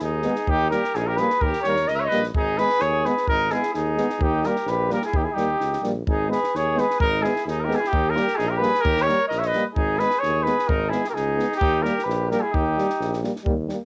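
Fiery and virtuosic, this Balkan brass band excerpt in 2/4 sets a mellow, distant trumpet melody up front over a roomy second trumpet line. Beneath them, a clear trombone with light vibrato and a close-miked French horn in the background supply accompaniment, and a warm, soft-attack tuba with a smooth top and transformer saturation carries the bass. A dry acoustic cocktail kit with a high-tuned snare and punchy kick drives it all, while the cassette-tape colouring on the trumpets, trombone, French horn and drums and a moderate reverb give a homemade feel as the harmony swings between Eb and Abm.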